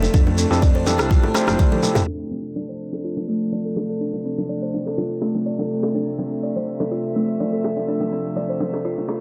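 A buzzing, woody kalimba sits up front, weaving arpeggios with delay and sidechain pumping through this hypnotic, spiritual afro house excerpt in D minor at 124 BPM, and a filter sweep runs across it from 2.1 seconds as the chords move from Fmaj7 to Dm7. Dark, reedy strings hold sustained chords beneath it, and very quiet high-tuned bongos run throughout. In the opening seconds, a deep, tape-warm electronic kick, a smooth gliding synth bass, gritty overdriven electric piano stabs with fast tremolo, shekere, congas and a background deep house kit with rim clicks and toms all play, with a drum fill at 1.6 seconds.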